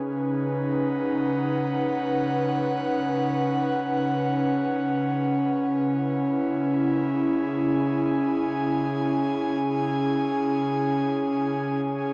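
The recording has the worn, warbling character of old cassette tape, its pitch drifting gently, all set inside a cathedral-like reverb whose tail hangs for about 7.1 seconds. This is a reflective, serene ambient piece in free time and C# minor, heard as a short cut from a longer work. A single airy, breathy pad carries the whole of it alone, sitting up front and spanning C#3 to G#5. Its soft blend of detuned sawtooth and triangle tones with a noise layer gives it a hushed, misty texture, treated with chorus and a diffuse ambient delay. The harmony rests on a B over C# sonority before settling onto C# minor at 5.2 seconds, and the chords fall away at 11.5 seconds as the pad's long release carries to the end at 12.1 seconds.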